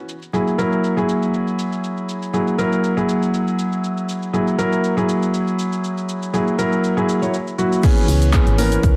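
A felt-muted upright piano sits up front in this deep, smooth deep house fragment at 120 BPM with a light swing, its mellow, intimate stabs carrying vintage 12-bit sampler grit, sidechain pumping and digital delay over an F#9 chord, while a filtered, overdriven kit of cabasa, handclaps, hi-hat and crash cymbal ticks quietly beneath. At the drop at 7.8 seconds the harmony shifts to C#m7 as a punchy, overdriven electronic kick arrives, joined at 8.1 seconds by a round, woody FM bass that pumps with the sidechain. Vinyl crackle and a light digital ambience frame the sound.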